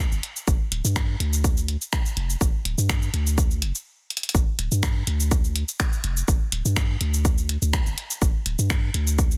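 Minimal techno at 124 BPM in 4/4 with a light 16th-note swing, hypnotic and quirky, cut from a longer piece: a deep sine sub bass with a pitch-drop attack pumps under sidechain from the start, a house kit of finger snaps, hi-hat and shaker with softly clipped snare joins at 0.1 s, and a layered, tape-warm electronic kick enters at 0.5 s, all up front in a dry, dense, heavily limited master, with a brief stop from 3.9 s and a drum fill at 4.1 s before the drop at 4.3 s.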